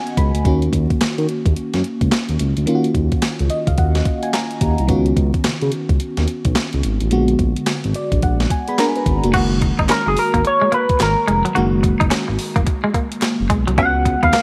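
Bouncy and confident, this swung new jack swing R&B excerpt at 108 BPM sets a dreamy FM electric piano with a soft pad layer, chorus and tremolo over a crisp 8-bit drum machine with a thumpy kick and handclaps and a smooth, gliding synth bass, until at 9.3 seconds a twangy clean guitar riff enters, joined at 9.9 seconds by an up-front envelope-filtered guitar melody and a very quiet group handclap, all under light reverb and vinyl crackle.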